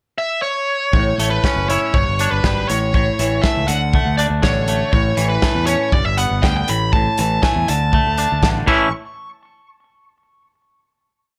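A bright, smooth overdriven lead guitar opens this short, jangly and upbeat indie rock piece with a pickup, spinning a free, picked melody up front. At 0.9 seconds a twangy, scooped electric guitar enters with clean picked arpeggios, joined by a punchy, growling fingered bass playing a syncopated overdriven riff and a loose acoustic drum kit with a tight kick and medium-tuned snare driving a straight indie four groove. The verse moves through A, G and D changes in a small room before the band stops at 8.9 seconds, leaving a final hit to ring out.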